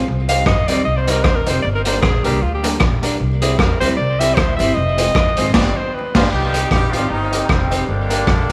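A clean hollow-body guitar with phaser and tape echo, a worn, slightly detuned upright piano playing stabs, and a woody, thumpy pizzicato upright bass open this driving, energetic ska fragment. A bright alto saxophone soon takes a solo with light vibrato and subtone over a gritty, up-front garage kit with a boomy kick, while a jingly tambourine sits barely audible beneath, and the band hits an accent from 5.5 to 6.3 seconds. At 6.2 seconds an up-front horn section enters in octave doubling, all within a moderate echo-chamber reverb and vinyl crackle.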